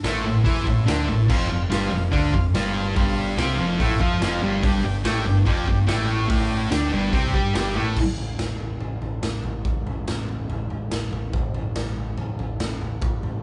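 A straight, driving 4/4 beat from a raw, punchy garage drum kit of crash, hi-hat, kick, snare and toms in a pumping stone room carries this menacing, swaggering garage rock fragment, where a thick, double-tracked fuzz guitar riff up front and a growling, overdriven picked bass move through A minor to F5 and G5 power chords, a buzzy vintage combo organ adds a quick fill at 0.5 seconds before holding clean sustained chords with light vibrato in the background, and at 8.0 seconds the guitar and organ drop out, leaving bass and drums pounding on until the cut at 13.4 seconds in a live, lightly reverberant room sound with a dark, rolled-off top.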